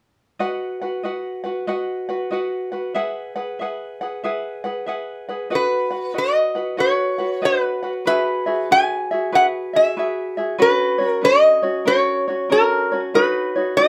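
Hawaiian music in B major at 94 BPM with a swung 4/4 lilt, sunny and dreamy, opens on a light, fingerpicked tenor ukulele alone over B and Eadd9 before a bright, nasal metal-body resonator slide guitar, played with fingerpicks and sitting up front, takes the melody at 5.6 seconds, moving through F#sus4 and F# to close this cut from a longer piece on Badd9 in a small, moderately reverberant room.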